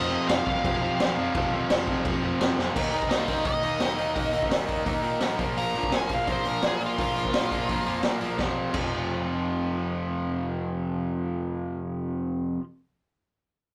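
Straight 4/4 punk rock with a rebellious, rowdy energy, this cut from a longer piece puts a bright raw garage guitar riff up front over two overdriven cranked stack guitars, one very quiet and double-tracked, and a growly, punchy overdriven picked bass, while a gritty small-room garage kit with a high-tuned snare plays a fill at 2.6 seconds just before a nasal, parked-wah lead guitar solo from 2.7 to 8.4 seconds, all in a rough rehearsal-room take with tube saturation and light reverb.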